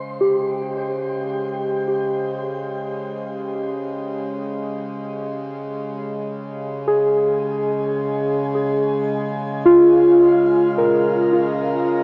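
Steeped in a dark, shimmering reverb wash, this weightless ambient fragment drifts at 54 BPM in 3/4 in Db lydian, as up-front, muted felt-like synth keys with chorus and delay trace soft, decaying arpeggios over a reedy, breathing pedal harmonium drone that fades in across the full 12 seconds.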